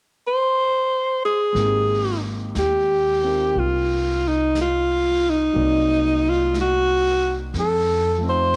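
A growling, breathy alto saxophone carries the melody up front from 0.3 seconds in this tender, late-night jazz ballad excerpt at 60 BPM in Ab major, joined at 1.5 seconds by a warm grand piano in the background and a woody pizzicato upright bass, with a soft brushed vintage drum kit entering at 1.6 seconds as the harmony moves through Abmaj9, Cm7b5 and F7 under light reverb and the hazy character of a home cassette recording.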